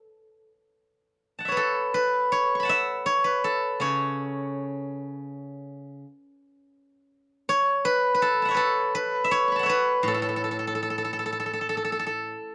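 The rhythm moves freely, with uneven, rubato beats drifting around a pulse of 81 BPM in 4/4. This serene, flowing piece of Chinese traditional music is a short solo for steel-string zither, heard in an A gong mode. The zither plays alone for the full 12.5 seconds, plucked with fingerpicks and spanning A2 to C#6. Its tone is silvery and ringing, and it sits up front in a light reverb. The sound carries the worn character of old cassette tape, with a warbly pitch drift running through the fragment, which is cut from a longer piece.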